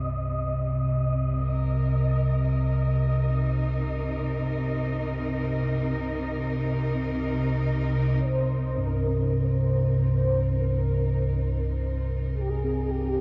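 Dark ambient drone with an unsettling, desolate mood, unfolding at a slow pace in a vast, echoing space bathed in cathedral-like reverb. A deep, ominous rumbling drone sits up front from the start, its dark sawtooth-edged tone carrying built-in reverb, while a rich studio cello section sustains a smooth, bowed Cm7 chord with vibrato above it. An airy, breathy wind-like noise texture hovers high over the opening until about 8.3 seconds. At 8.2 seconds a mellow, horn-like synth lead takes up the melody, its round sawtooth tone thickened by ensemble chorus and trailed by a diffuse ambient delay. Shortly after, a bronze singing bowl enters in the background with metallic arpeggios whose tone shows a slow beating, struck with a suede striker and close-miked, its ringing tone also feeding the delay. This passage is cut from a longer piece.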